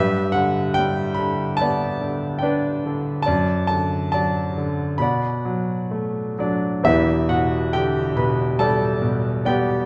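A clear grand piano carries this brief, lyrical classical passage alone, sounding natural and up front across its full 9.9 seconds and ranging from a deep E1 to B5. The mood is melancholic and reflective, with a rubato feel that lets the 4/4 pulse breathe at roughly 62-74 BPM. The harmony moves from G to D/F# and Bm7 before settling on Em7 at 6.8 seconds, where the opening idea returns. A generous, wet reverb with a 1.7-second tail places the instrument in a resonant church or concert hall. The tuning sits slightly low, with A4 at 436 Hz, in this fragment cut from a longer piece.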